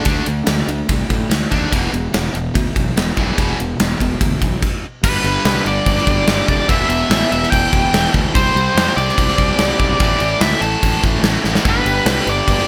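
A menacing, aggressive hard rock excerpt in E minor at 145 BPM opens with a double-tracked, picked electric guitar riff, overdriven and touched with slapback echo, joined almost at once by a growly, fuzzed fingered bass and a gated 80s drum kit. The drums sit up front with a punchy kick, a medium-tuned snare, and bright crash and ride cymbals in an airy stone room, while the bass adds a punchy, overdriven low end beneath the riff's D5 and E5 power chords. The band breaks off in a stop from 4.6 to 5.0 seconds, then at 5.0 seconds a biting lead guitar enters with a bright, picked, overdriven melody high above the riff. The harmony moves through G, Em, C5 and A5 before returning to G, and a drum fill at 11.4 seconds drives toward the cut. Moderate reverb gives the whole performance a big arena sound.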